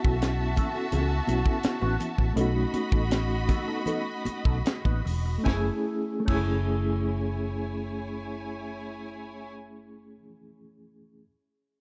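A straight 4/4 groove at 73-86 BPM slows over the first 5.5 seconds of this excerpt of lush, bittersweet, silky 1970s-style soul in F# dorian, moving from A6 to B7 and settling on F#m9. A tight funk kit with a high-tuned snare and a round, foam-muted fingered bass sit up front, while damped, high-tuned congas in the background join at 0.6 s and drop out with the drums at 6.5 s. A reedy electric piano with fast tremolo carries the accompaniment, a dark, clean electric guitar plays a wah-tinged riff in the background, and a smooth, warm bowed violin section adds a vibrato second line, all within a warm, dark reverb.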